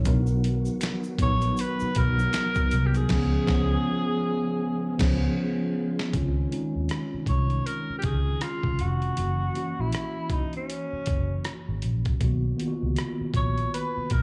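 A mellow tine electric piano with slapback echo, a faintly overdriven tonewheel organ on slow rotary and a round, foam-muted electric bass open this smooth, sensual neo-soul R&B excerpt in Db major at 79 BPM, joined by a gritty, pitched-down boom bap drum kit and a faint tube shaker with finger snaps, before a breathy, whispered subtone tenor saxophone enters at 1.2 seconds with scooped notes and vibrato, the organ dropping out at 6.1 seconds after a band accent and drum fill, all heard as a live gig through a club PA.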